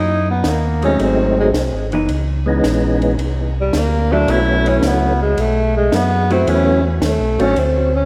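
Bluesy and swinging, this soul jazz organ trio excerpt at 110 BPM in B mixolydian features a breathy, subtoned tenor saxophone solo with scooped notes and tape echo over a round, key-clicking tonewheel organ bass line through a slow rotary speaker, while a fat, lightly overdriven percussive organ with chorus vibrato and tape echo adds melody from 0.8 s, a dry cocktail drum kit brings dark hi-hat and ride cymbals with a high-tuned snare, and a picked, compressed hollow-body jazz guitar comps from 1.9 s to 6.5 s, all bathed in a dreamy, lush hall reverb.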